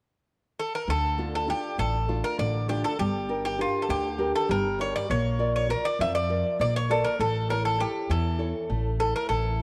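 This brooding Greek folk piece for a bouzouki band moves in a brisk 7/8 at 200 eighth-note beats per minute, set in D harmonic minor and tuned slightly high to A4 = 444 Hz. The Greek bouzouki carries the melody from 0.6 seconds, its picked double strings ringing metallic and up front, with some courses doubled at the octave. From 0.9 seconds the nylon-string guitar fingerpicks a classical-style accompaniment, with occasional finger squeaks on its strings. Alongside it, the upright bass plays pizzicato lines with a woody, steel-strung tone that sits prominently in the mix. The harmony moves through Dm, Gm, Bb and A, and a moderate plate reverb lends the moody fragment, cut from a longer piece, a lingering glow.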